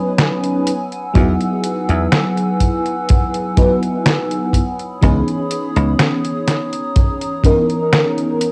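A detuned 8-bit drum machine ticks out hi-hat and a medium-tuned snare from 0.2 seconds at a slow 62 BPM in straight 4/4, and a dark, punchy acoustic kick with a rolled-off top joins at 1.2 seconds, both touched with studio reverb. This short vaporwave excerpt feels woozy and dreamy, sitting on chords that move from B6/9 to Emaj9 and then C#m9. The dry thumbed slap bass arrives with the kick, bright and foam-muted, and drops out at 5.9 seconds. An FM electric piano layered with a soft pad carries the accompaniment, lush and mellow with a fast, decaying attack, wrapped in ensemble chorus and analog delay. Above it, a warbling, detuned tape-like pad holds the chords, its slow attack, wave-folded tone and 12-bit sampler grit giving a nostalgic, lo-fi haze. The whole is captured on home cassette in a moderate booth ambience, with the drums, bass and piano up front.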